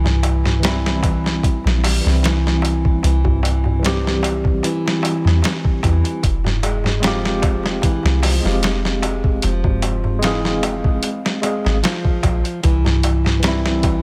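Hypnotic and cinematic, this trip hop excerpt rides an up-front, gritty, pitched-down boom bap sampler kit with a thumpy kick, alongside a deep, round 808-style bass and a soft-handed clay-shell darbuka. A fingerpicked nylon-string guitar plays full-bodied classical arpeggios through tape echo, while a bright tine electric piano enters at 0.6 seconds with tremolo, 12-bit sampler grit and its own tape echo. The harmony moves from C to Fmadd9 at 6.2 seconds and back to C, all in a dry setting with very little reverb.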